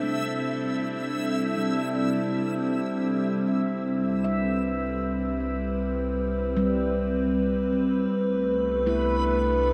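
A bright, morphing wavetable pad sustains C69 chords up front with chorus, while mellow stainless-steel handpan arpeggios ring through delay, a tense, string-like drone hums in the background and a reversed, dreamy granular texture swells above; then at 3.5 seconds the harmony moves to Cmaj7 as a round sine sub bass fades in and the drone drops away, before the swelling texture returns at 8.9 seconds, all within a serene, weightless ambient piece in 3/4 bathed in a vast cathedral reverb.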